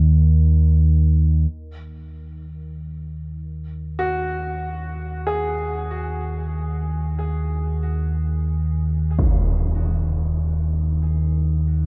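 A deep, ominous, rumbling drone with a detuned, warbling vintage character and its own built-in reverb anchors this cavernous, desolate dark ambient piece in Eb minor and free time, joined at 4.0 seconds by clear, boxy grand piano arpeggios with delay, while a huge, low-pass-filtered impact lands at 9.2 seconds within a lightly reverberant mix.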